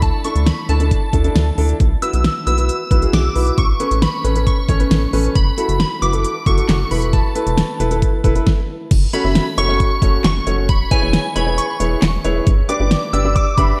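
A shimmering FM bell carries the melody high in the register, its dreamy, vintage tone warbling through chorus and phaser, with a slapback echo and a long release trailing each bright note. This cool, melancholic synth-pop fragment, cut from a longer piece, sets the bell over a baby grand piano whose open, long-sustaining chords also carry a slapback echo. Underneath, a rubbery square-wave bass sits low and dark, bouncy and hollow with a resonant filter pluck and a moving notch. A layered electronic pop kit sits up front, with a knocking kick, fat snare, crisp hi-hats, handclaps and crash cymbal, all with a tape-tinged polish. The harmony drifts through suspended and added-note chords such as Dsus2, Bsus4 and Aadd9, and the music halts briefly at 8.5 s before a new passage begins at 8.9 s, moving from F#m through E6 to G. A lush hall reverb gives the whole a big arena sound.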